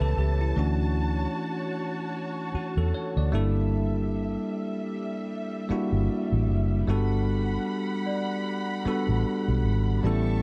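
Swung sixteenths at 76 BPM give this short R&B excerpt an unhurried, romantic and smooth lean, with a muted fingered electric bass sitting round and punchy up front while a bell-like tine electric piano lays down clean, direct accompaniment. Behind them a lush bowed string section holds woody, distant chords with vibrato, and a very quiet celesta adds delicate, airy sparkle until 10.0 s. The chords move from A7 to Dmaj7, then Gm6 at 3.3 s and Gmaj7 at 6.9 s, all wrapped in studio reverb within a dark, warm production.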